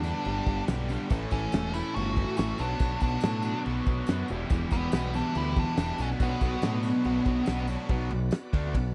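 A nasal lead guitar with a parked wah sits up front, its overdriven melody carrying slapback echo until 7.7 seconds, over a growling, overdriven picked bass and a cloth-damped, thuddy drum kit with a fat snare, tight kick and dark cymbals. Behind them, three picked guitar riffs fill out the background: a cranked stack guitar with a phaser, a double-tracked, compressed distorted guitar, and a plain overdriven one, along with a very quiet tonewheel organ holding shouting, key-clicking chords through a slow rotary speaker and a jingly tambourine. This gritty, swaggering classic rock cut in B minor moves at 142 BPM in straight 4/4 through G, A, Bmadd9 and Em, with a dry, close 1970s-style studio sound.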